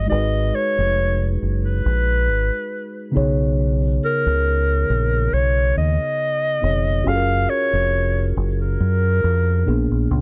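Smooth and late-night, this short R&B cut at 69 BPM with a light sixteenth-note swing sets an up-front, close-miked jazz clarinet solo, warm with subtone, vibrato and scooped notes, over a mellow, clean tine electric piano and a round, punchy, dark dub bass, all moving through rich chords from Abm9 to a closing Bb7b9 at 9.7 seconds in a dry, close 1970s-style studio sound with light reverb.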